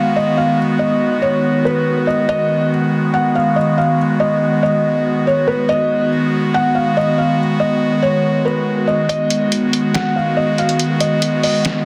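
Atmospheric cloud-rap hip hop at 141 BPM in 4/4 with a half-time feel, this short excerpt from a longer piece sits in B lydian and feels blissful and dreamy. A felt-muted upright piano carries the melody from the start, its thick felt giving a dark, intimate tone with audible action noise, and a digital delay trails its notes. Beneath it, an airy, breathy pad holds sustained chords throughout, its detuned sawtooth and triangle layers with a noise layer sounding bright and up front, shaped by slow attack, long release, chorus and phaser. At 9.1 seconds a lo-fi sampler-style drum kit enters with hi-hat and a fat snare, compressed, pitched down and muffled, while the kick stays muted. The whole sits in a digital ambience with a dense, heavily limited modern master.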